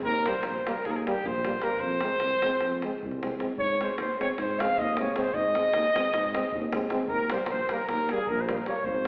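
Balkan brass band folk in a fiery, bittersweet 9/8 at 307 BPM in eighths, this short cut from a longer piece in Ab major moves through Eb, Fm and Ab before returning to Eb, with a dark, up-front cornet carrying the melody over a dark tuba bass and a tight, close davul. A clear, smooth-topped French horn in the background and a soft-attacked euphonium add accompaniment from 0.3 s, and a vintage flugelhorn enters with a second line at 3.6 s, the horns all in classical style with light vibrato. The ensemble sits in a wet recital hall, heard from further back in the room through an AM radio sound.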